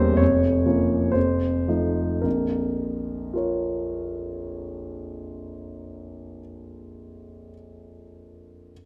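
A warm concert grand piano with a deep bass, heard up front and close in a moderate recital hall reverb, carries this passionate, stormy excerpt of a romantic character piece in Bb minor, played with rubato in 2/4 at around 53-68 BPM, slowing over the opening 2.2 seconds as the harmony moves from Bbm/F through F7 back to Bbm.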